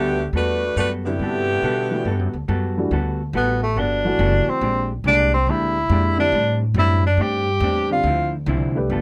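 Swinging eighth notes drive this brassy jazz excerpt, where a woody pizzicato upright bass and a dark, clean hollow-body electric guitar play throughout, a bright saxophone section with vibrato carries the opening melody until 2.4 seconds, a slightly detuned, boxy upright piano joins at 1.1 seconds, and a clear tenor saxophone with light vibrato takes a roomy solo from 3.4 seconds within a light reverb.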